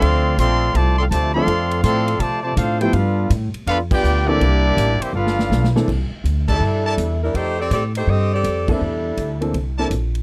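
A swinging 4/4 groove drives this joyful big band excerpt, where a clear trumpet section carries the melody over a mellow, distant trombone line, woody pizzicato upright bass, a punchy drum kit and a smooth vintage piano, then after a drum fill at 5.1 seconds a saxophone section with slapback echo takes the tune while a bright trumpet section adds tight stabs, all in a dry, close 1970s-style studio sound.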